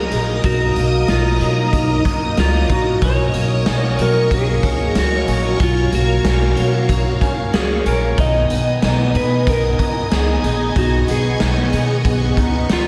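A clean lap steel guitar carries the melody from the first moment, its slide tone softened by analog chorus and delay, over lush sawtooth chords from a vintage string machine and a bright, twangy electric guitar at the edge of break-up picking arpeggios. This floating, ethereal dream pop moves at 93 BPM in a straight 4/4 through Bmaj7, F# and G#m, anchored by a woody, thumpy pizzicato upright bass sitting up front and a gritty, saturated garage drum kit with a punchy kick and rolled-off top. A lush hall reverb soaks the whole mix in a dreamy haze across this 12.9-second excerpt cut from a longer piece.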